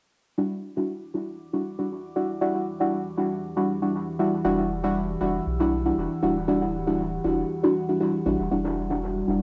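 A deep, mellow chord stab sits up front from 0.4 seconds, its dark, decaying hits wrapped in chorus, phaser and dub echo over an Em9 harmony in this hazy, hypnotic dub techno excerpt at 118 BPM with a light 16th-note swing. A moody, detuned analog pad with a slow attack and long release swells in at 1.8 seconds under a filter sweep, and a round, soft sub bass with transformer saturation joins at 4.4 seconds. The gritty cassette recording sits in a moderate echo chamber reverb.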